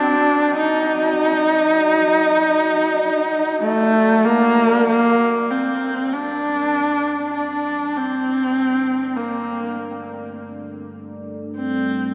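A husky, bright horsehead fiddle, bowed by one player with vibrato and portamento, carries the melody up front through a delay, while a deep, wave-folded ambient pad with chorus and its own reverb holds slow, sustained chords in the background, moving from Ebm to G5 at 5.5 seconds, the whole piece sitting in a long cathedral reverb that gives this short ambient passage a desolate, unsettling mood.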